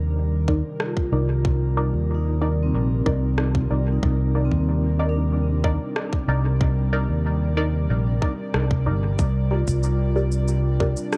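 Set in a dark digital ambience, this hazy, meditative ambient dub excerpt rests on an airy, breathy pad with chorus and a metallic, ringing vibraphone playing arpeggios through dub echo, while a punchy, tube-saturated fingered electric bass sits up front, joined from 0.5 seconds by a tight, overdriven electronic kick, also up front, and muted, phased dub chord stabs, and from 0.8 seconds by an overdriven, echoing electronic rim click and cabasa, as the harmony moves from Cm7 to Gm at 9.2 seconds.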